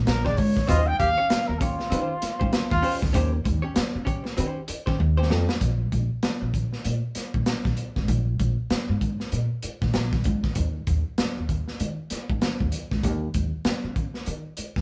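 Gritty and playful, this funk cut at 97 BPM swings its sixteenths on a woody, steel-strung pizzicato upright bass, while a saturated, punchy breakbeat kit with a rolled-off top sits up front. Over a Bb6 to Eb13 change, a breathy, whispered trumpet offers a short jazz-style line with vibrato and scooped notes, and a brilliant, roomy trombone joins briefly while a clean, compressed hollow-body archtop guitar comps underneath. After a drum fill at 5.0 seconds, only bass and drums carry on from 5.6 seconds, all in a modest studio reverb with the feel of a band playing live in one room.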